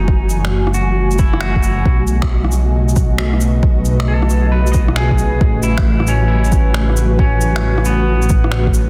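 A dark, rumbling detuned saw bass sits up front in this melancholic, wistful future garage excerpt, its saturated tone pumping against the sidechain. A deep, overdriven electronic kick drum enters at 0.1 seconds, joined at 0.3 seconds by electronic shaker, finger snaps, rim click and cabasa, also overdriven and given a large-room sheen, with soft clipping on the snare, all riding a swung 16th-note feel in 4/4. Above them, an airy, breathy pad holds sustained chords through a chorus effect, moving from F#m9 to B9 and then to A69. A slightly broken-up, twangy electric guitar adds accompaniment coloured by vintage 12-bit sampler grit and tape echo, pumping along with the pad and bass. Far in the background, a flickering, grainy granular texture glimmers in its own reverb, set within a digital ambience and a dense, heavily limited modern master.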